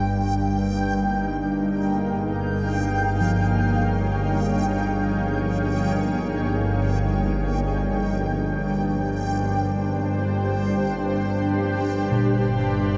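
A tense, string-like bowed drone sits up front in this ominous, cavernous dark ambient excerpt, holding low between G1 and G2 with vibrato, a sawtooth edge, a noise layer and ring modulation under its own reverb. Alongside it from the start, a reversed, swelling texture hovers high on G5, dreamy and bright with detuning, granular grain and shimmer reverb. At 1.0 s a granular cloud pad enters and gradually fades in, spreading blurred, evolving sustained chords from Bb3 to F5 with shimmer reverb, moving from B-flat minor to C7 at 7.6 s. From 3.2 s a very quiet quartz singing bowl adds soft, felt-mallet arpeggios between Bb2 and F3, its tone pure and ringing with slow beating. Played in free time and tuned to A4 = 442 Hz, the piece unfolds in a huge, wet reverb with a 7.6 s decay and a dark, warm production.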